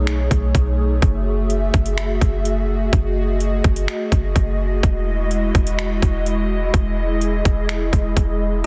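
An overdriven trap kit with a hard-clipped kick, metallic hi-hats, finger snaps and gritty 12-bit sampler texture, re-recorded in a small room, sits up front in this ethereal, melancholic half-time cloud-rap fragment, cut from a longer piece, alongside a deep, boomy sine-toned 808 bass and a breathy, detuned pad with chorus and sidechain pumping that drifts from B13 to F#m9 at 1.0 seconds and then to Emaj9 at 4.8 seconds, all in a dense, heavily limited modern master.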